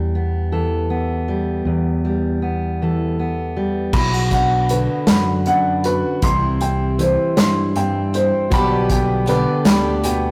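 A slow, straight 6/8 lilt at 52 dotted-quarter beats per minute carries this nostalgic, uplifting indie folk excerpt. It opens with a full-bodied fingerpicked jumbo steel-string guitar up front over a round, amped fingered electric bass, moving from Em through Bm, C and G/B. At 3.9 seconds a woody, intimate upright piano with audible action noise adds high arpeggios, and a drum kit played with bundle sticks brings a punchy kick, medium-tuned snare, hi-hat and dark crash; a boxy picked swing-style acoustic guitar joins at 8.5 seconds, all set in a moderate stone-room reverb with rough rehearsal-room saturation that gives the building arrangement a lived-in feel.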